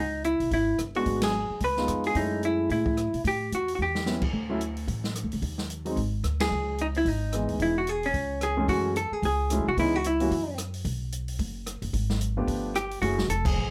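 A clean, compressed hollow-body jazz guitar carries the melody up front over thumpy, woody pizzicato upright bass at the start of this late-night, moody small-group swing-and-bop excerpt at 221 BPM in C# minor, soon joined by an open drum kit with dark cymbals, a medium-tuned snare and a boomy kick, and then an intimate grand piano with audible action noise from 1.0 s, with a band accent at 1.2 s and a shift to F# minor at 8.7 s.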